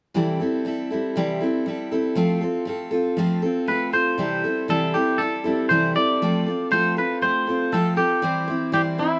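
A picked steel-string acoustic guitar opens this short country excerpt at 119 BPM in C major, its fresh strings giving a full-bodied, dreadnought ring up front over a straight 4/4 feel and chords moving between C6 and F. At 3.7 seconds a clean, twangy electric guitar enters with the melody, its scooped, fingered tone sitting just as close as the acoustic. The close, detailed sound carries little reverb, lending the nostalgic, down-home mood an intimate, front-porch plainness.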